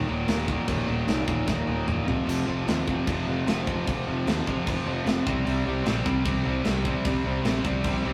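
Two up-front guitars, one a cranked, overdriven stack and the other picked, distorted and compressed, drive a riff through Eb5, F5 and C5 in this rowdy, upbeat punk rock excerpt at 151 BPM, with a bright, direct electric bass underneath and a tight metal drum kit, its medium-tuned snare and bright cymbals sitting mid-forward, entering at 0.3 s and throwing a fill from 1.5 to 2.3 s, the whole captured as a rough rehearsal-room recording with tube saturation and moderate reverb.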